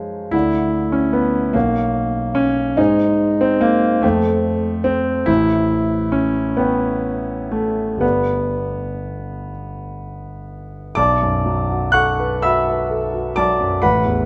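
In a slow, rubato 6/8 that drifts at around 40-50 BPM in dotted quarters, this short impressionist piece for solo piano unfolds in B minor with a mysterious, hazy mood. A warm concert grand carries everything alone from 0.0 to 14.3 seconds, spanning G1 to F#6 with a deep bass and an up-front presence. Its harmony glides through coloured chords such as Dadd9, Bsus2, Fadd9, A9 and Gmaj7, creating a misty, mysterious air. At 11.0 seconds the opening section gives way to a second passage that settles onto Bm7. Close, detailed microphones capture the instrument within a moderate concert hall reverb of 2.4 seconds, and the recording is cut from a longer piece.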